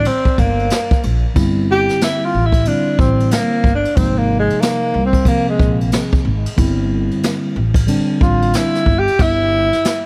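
This short excerpt of mellow, cool jazz-hop opens with the whole band together: a breathy tenor saxophone, a mellow tine electric piano, a woody pizzicato upright bass and a jazz drum kit played with brushes, all set in a small room with a soft bed of vinyl crackle. The groove has a loose swing in 4/4. The brush kit sits up front with dark cymbals, a medium-tuned snare and a boomy kick. The electric piano offers clean, gentle chords, moving from G minor to Gsus2, then Abadd9 and back to Gsus2. From 1.4 seconds the saxophone takes a solo, whispered and intimate, with subtone, scooped notes, vibrato and a tape echo, its tone distant and roomy. The piano falls away at 8.9 seconds, the bass at 9.7 and the drums at 10.0, and the saxophone carries on to the end at 10.1 seconds.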